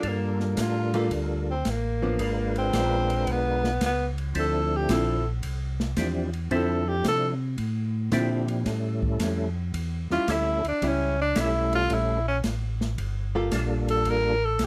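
A clear tenor saxophone solos up front from the very start of this bluesy, late-night soul jazz organ trio excerpt, its jazz-style vibrato riding a swung feel over Gm9, G#dim7, Dm9 and A7 harmonies. Alongside it, a percussive tonewheel organ with third-harmonic percussion, chorus vibrato and a slow rotary speaker adds a round, mellow melody, while a dark, lightly overdriven organ carries the bass up front and a clean, compressed hollow-body archtop guitar accompanies with picked notes until 13.5 seconds. An airy, polished acoustic drum kit with shadowy cymbals, a medium-tuned snare and a boomy kick sits lower in a small room, all under light reverb.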